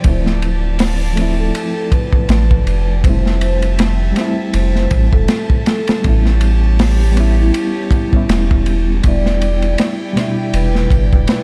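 A crunchy, saturated breakbeat kit with a punchy kick and dark cymbals sets a swung 80 BPM trip hop groove in 4/4, with a round, deep dub sub bass sitting up front beneath it. A reedy electric piano shimmering with fast tremolo and tape echo carries the accompaniment through Dm7, Fmaj7, A7 and Em7, while a floating chamber string section holds soft-attack chords behind it. Over the top, a breathy sine lead with chorus and vibrato sings a quiet melody, giving the whole 11.4 seconds a dark, smoky, small-room mood.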